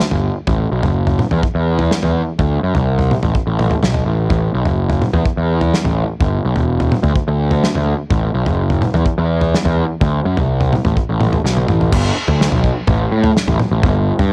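A damped 70s drum kit opens this short psychedelic rock excerpt at 126 BPM in a straight 4/4, its dry, dark-cymbaled sound with a tight kick and medium-tuned snare sitting up front, and a fuzz picked electric bass joins almost at once, overdriven, round and punchy between E1 and A2. The mood is trippy and mysterious, held in light reverb, as crash cymbal, kick, snare and toms drive the opening stretch. A drum fill at 11.4 seconds leads into a new section at 11.9 seconds that runs to the cut at 14.3 seconds.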